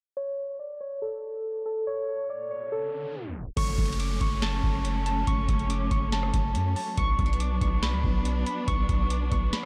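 Muted, felt-like synth keys open this brooding, hard-hitting trap cut at 141 BPM in a half-time feel, carrying a soft, intimate melody in F# minor through chorus, analog delay and a filter sweep, while a riser builds from 2.4 seconds and a tape stop pulls the sound down just before 3.6 seconds. At that point a booming analog drum machine with a deep kick, crisp snare, metallic hats, rim clicks and crashes, roughened by vintage 12-bit grit, lands alongside a long, sine-like 808-style bass and a lush, dark symphonic string section holding bowed chords with vibrato. The harmony moves from F# minor to B minor at 7.0 seconds, framed in light reverb and digital ambience.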